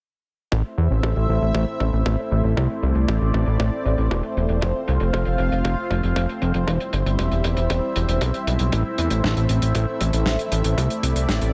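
Melodramatic and danceable, this italo disco fragment is cut from a longer piece and settles into a straight groove. A fat, thick analog bass built from detuned sawtooth waves sits up front from 0.5 seconds, its fast attack and sustained notes carrying a filter sweep. At 0.7 seconds a lush unison pad of detuned sawtooth and square waves arrives with a slow attack, holding bright sustained chords colored by chorus and phaser. The drums pair a thumpy, sampler-style electronic kick, overdriven and re-recorded in a large room, with a dry, damped 70s kit whose hi-hat and medium-tuned snare have a warm, rolled-off top, and a filter sweep runs across the drums throughout. The harmony moves from A minor to F, then C over E, and back to A minor at 8.7 seconds, all within a light reverb.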